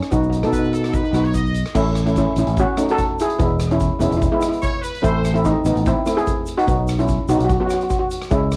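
Festive and sunny, this short calypso cut from a longer piece moves at 146 BPM in 4/4 with a slight sixteenth-note swing. A mellow steel pan carries the melody up front, its metallic shimmer softened by rubber sticks and a band-limited, vintage cassette tone, while a second steel pan fills in the accompaniment with added plate reverb. A punchy fingered electric bass sits forward beneath them, and a street-band drum kit with dark cymbals, a boomy kick, hi-hat, crash and rim clicks brings an airy, big-room polish, with a grainy tube shaker tucked in the background. A brilliant horn section with light vibrato adds a loose second line in two brief bursts, first at 0.5 seconds and again at 4.6 seconds. The harmony moves through B, A6, E, A minor and back to B, all captured with light reverb on a homespun cassette recording.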